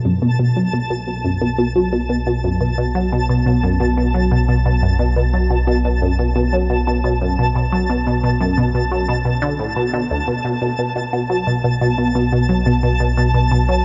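Steeped in a huge ambient reverb and the soft haze of cassette tape, this expansive, cosmic slice of sequencer-driven space music at 88 BPM rests on a B7(no3) chord, where an up-front, squelchy resonant blip pluck riff with phaser, delay and vintage 12-bit sampler grit rides over a deep, round analog bass and a mellow granular texture that twinkles with an octave-up shimmer and its own reverb.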